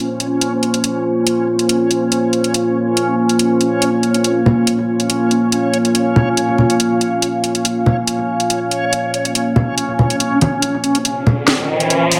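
A half-time 4/4 groove at 141 BPM drives this dark, cavernous deep dubstep excerpt in Bb minor, where an overdriven electronic garage kit with a cracking snare and hi-hat sits up front over a deep, detuned sawtooth pad with chorus holding a Bbmadd9 chord, a reversed, granular texture lingers on Db4, damped, low-tuned congas with dub echo join at 4.5 seconds, and an electronic riser lifts the build-up from 11.1 seconds, all inside a wet echo-chamber reverb.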